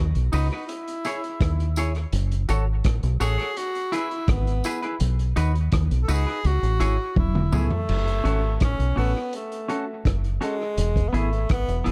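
Dark, small-room production frames this serious, laid-back roots reggae excerpt, where a round, foam-muted dub bass and a muffled, lo-fi vintage drum kit sit up front, a breathy, whispered tenor saxophone carries the melody with light vibrato and tape echo over a bright, clean semi-hollow guitar that also trails tape echo, a tambourine in the background drops out at 7.7 seconds, and a drum fill from 7.2 seconds leads into a new section at 7.9 seconds.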